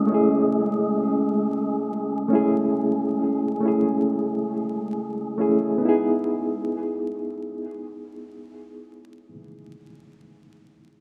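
A rough home-demo sound with vinyl crackle and a moderate plate reverb frames this short, melancholic trip hop cut from a longer piece, moving at a slow 68 BPM in 4/4 with a swung sixteenth-note feel and tuned to A4 = 442 Hz. Up front, a reedy, clean electric piano plays the accompaniment from A3 to G#4 through its built-in speakers, shaped by fast and harmonic tremolo, a low-pass filter and tape echo. Behind it, a deep, detuned analog pad holds a C#4 chord with slow attack and long release, colored by chorus and phaser. An airy, breathy wind-like noise texture drifts between G#3 and G#4 in its own built-in reverb, adding a dark, cinematic haze. The harmony shifts from Amaj7 to Emaj7/B at 5.8 seconds, and once the pad and wind texture drop out at 5.9 seconds, the electric piano carries on alone until 11.0 seconds.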